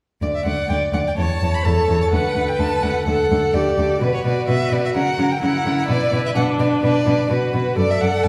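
A single violin carries the melody up front and close, its warm, soft-attacked tone shaded with vibrato and expressive portamento in this quick, spirited classical-period movement for string quartet. A second violin sits further back, its focused, bowed line set beneath the melody from 0.2 s. The cello, also close and up front, gives a clear bass with vibrato from the same moment. The viola joins at 1.2 s with a rich, smooth and even accompaniment. The harmony moves through chords including D, A/E, B5, F#7/C# and Bm before settling on D/F#. A recital hall reverb places the quartet further back in the room, and the lively passage is cut from a longer piece, ending at 8.3 s.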